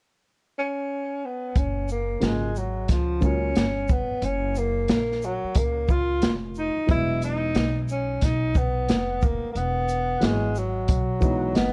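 A breathy tenor saxophone opens this cool, smooth jazz-hop excerpt at 0.6 seconds, its subtone lines carrying vibrato, scooped notes and a trail of tape echo. At 1.6 seconds a swung, small-room jazz kit with a boomy kick, hi-hat, snare and shaker arrives with a woody pizzicato upright bass, and soon after a dark grand piano with short sustain fills in the harmony as the chords shift from F#maj9 to Emaj9. The piano adds a brief fill at 11.2 seconds, and the whole track sits in light reverb under a worn, warbling cassette-tape pitch drift.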